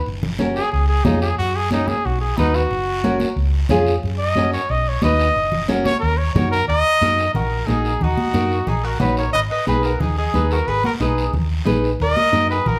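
Cumbia at 181 BPM in Eb minor, danceable and fiery, cut from a longer piece: a trumpet with light vibrato leads up front with a solo over the first 6.7 seconds, backed by a round, dark hollow-body electric bass, bright fingerpicked nylon-string guitar with audible finger squeak, raspy guiro and high-tuned, damped congas played with hard hands. At 6.7 seconds a woody, double-strung picked mandolin joins as a second line, shortly after the harmony has moved from cycling Gb, Db and B chords to Eb minor; it then passes through Ab minor before returning to Eb minor. The band plays live in one room with a moderate large studio reverb, the percussion sitting close and dry.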